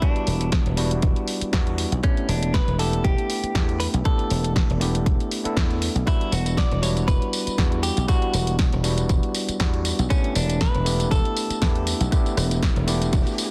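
A punchy, up-front electronic kick drives this sleek, groovy nu-disco excerpt in 4/4 with a light sixteenth-note swing, joined by a house kit of punchy snare, bright hi-hats, rim clicks and tambourine, while a dry, foam-muted thumbed slap bass enters at 0.3 seconds. A barky, overdriven tine electric piano played through a combo amp carries the Em9 and A7sus4/E chords with digital delay, as a clean, twangy, direct-recorded electric guitar picks the melody with delay. A very quiet riser creeps in at 12.1 seconds, all set in light reverb under a dense, heavily limited modern master.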